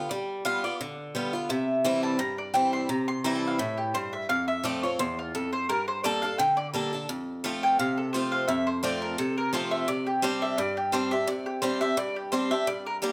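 Bluegrass excerpt with a rustic, lonesome mood and a swung feel, where an up-front, mellow mandolin with round double strings carries the melody over a bright, boxy picked swing-style acoustic guitar whose finger squeaks are audible, both sitting in a moderate large-studio reverb as the chords move from G7 through C and F to a closing Csus2.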